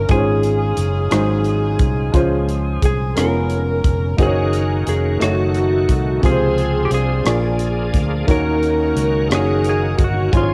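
Slow gospel in 6/8 at 59 BPM in Db major, jubilant and uplifting, cut from a longer piece and captured as a home recording on cassette in a small room. A mellow saxophone section with light vibrato and a dark, clean slide lap steel guitar carry the melody over a woody upright piano with audible action noise, a round, up-front fingered electric bass, and a punchy fusion drum kit of hi-hat, kick and rim click in a pumping room sound. At 4.2 seconds a bright, shouting tonewheel organ enters with lightly overdriven sustained chords through a slow rotary speaker and chorus vibrato, as the harmony moves from Gb6 to Gbm6 before settling toward Ebm7.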